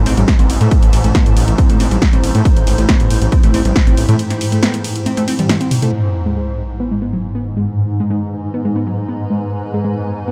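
A straight 4/4 pulse at 138 BPM drives this dark, industrial stretch of peak-time techno, cut from a longer piece and tuned to A4 = 438 Hz. A layered techno kit opens at 0.1 s, its punchy snare, hi-hats, ride cymbal and toms overdriven and filtered dull, and an overdriven, heavy electronic kick joins up front at 0.3 s and stays until 3.8 s. A drum fill rolls in from 5.1 s, with a band accent landing at 5.5 s. Underneath, a thick, menacing detuned saw bass beats and pumps on Am until 4.2 s, when a break opens up. A swarming, nasal drone on G#2 and a blurred, cloudy granular pad hang in their own reverb throughout, while a warbling, lo-fi pluck riff with chorus, overdrive, tape grit and dub echo threads through the whole passage, all pumping against the kick. At 5.9 s the harmony shifts to G#m as an electronic sub drop hits and a filter sweep moves across the synth arpeggio, closing out in a dry, dark production.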